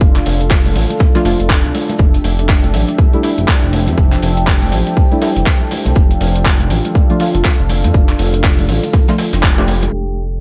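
Relaxed and warm, this deep house excerpt at 121 BPM with swung 16ths rests on a punchy, overdriven electronic kick and a smooth, gliding synth bass up front, beneath gritty sampler-style handclaps and hi-hat, a very quiet brushed jazz kit, bright high-tuned congas in the background, soft detuned chord stabs with chorus and digital delay, and two sidechain-pumped pads (a vintage, warbling analog one and a moody sub-octave ambient one) over Dm/F and Fmaj13, with a band accent at 9.4 seconds before a distant bucket-muted trumpet breathes a single G4 at 9.9 seconds.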